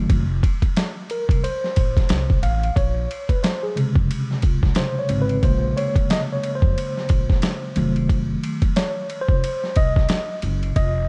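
A mellow tine electric piano and an upright bass open this smoky, cool jazz-hop excerpt, cut from a longer piece and set at 90 BPM in 4/4 with a swung sixteenth-note feel in Bb minor. The electric piano carries a solo from the start, its clean, warm tone coming through built-in speakers and sitting up front. Beneath it, the pizzicato upright bass on gut strings gives a woody, thumpy low end. A dusty, sampler-style drum kit of kick, snare, hi-hat and ride enters at 0.1 seconds, compressed and overdriven, with a gritty edge from being re-recorded in a small room and placed up front. The harmony moves from F to Bbm9 at 2.8 seconds and on to F7b9 at 7.8 seconds, while light reverb and digital ambience wrap the dark production.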